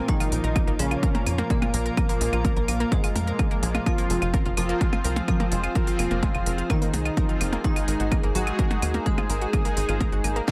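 Driving and cinematic, this melodic techno excerpt at 127 BPM pairs a thick, detuned unison lead melody with a glassy wavetable pluck line carrying 12-bit grit, a lush unison pluck arpeggio, brassy analog pad stabs and an evolving, warbling wavetable pad, all pumping under the overdriven, up-front kick that enters at 0.1 seconds alongside a techno kit of cracking snare, smooth hats, claves and percussion blips, while a tight, nasal sequencer bass joins at 0.3 seconds over Bbm7, Fm and Ab chords in a dry mix.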